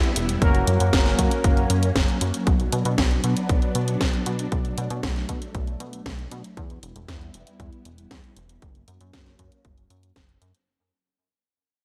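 Bright 1980s-style digital production with a moderate plate reverb frames this bittersweet, danceable italo disco excerpt in B minor at 117 BPM, where a swirling, phased string machine holds sustained chords under a filter sweep, a glossy, nasal chorused synth bass and a punchy overdriven electronic kick drive the groove alongside a house kit with a cracking snare and hi-hat, and a fat, brassy analog synth brass fires chorused, delayed stabs only from 0.4 to 1.7 s before the whole passage fades out across its length.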